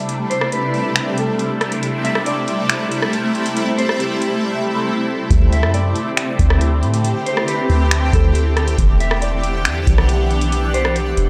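A shimmering, detuned ambient pad opens this dreamy, blissful atmospheric cloud-rap excerpt at 138 BPM in a half-time feel in C lydian, its chorus, phaser, built-in reverb and sidechain pumping carrying a C6 chord that later moves to D9sus4 and Em7, while a booming analog drum machine with deep kick, metallic hats, finger snaps and rim clicks and a dark, clean, fingered electric guitar melody soaked in spring reverb, tape echo and a low-pass filter arrive almost at once, a silent gap falls at 4.4 seconds, and a soft, round 808-style bass enters up front at 5.3 seconds, all captured in a dry, gritty hardware recording.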